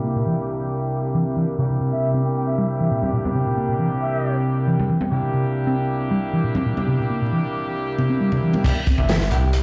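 This excerpt sounds as if it is playing through a big sound system in a bare stone room, with vinyl crackle, a muffled, filtered top end and moderate studio reverb. It is a swaggering, gritty breakbeat cut at 136 BPM in straight 4/4, opening on a C7 chord. A deep, moody analog pad holds sustained chords with chorus, phaser and sidechain pumping. Beneath it, an amped picked electric bass plays a riff through digital delay and a filter sweep, while a horn section with light vibrato and octave doubling plays jazz-style stabs through a low-pass filter and delay. A bright, airy baroque flute enters at 1.9 s with a tongued, straight-tone melody squeezed into a telephone sound with 12-bit sampler grit and delay, and ringing, hard-handed congas join at 3.0 s. At 8.6 s a swirling, thick detuned saw bass arrives with a crunchy, up-front breakbeat kit built from dark cymbals, a medium-tuned snare and a tight kick.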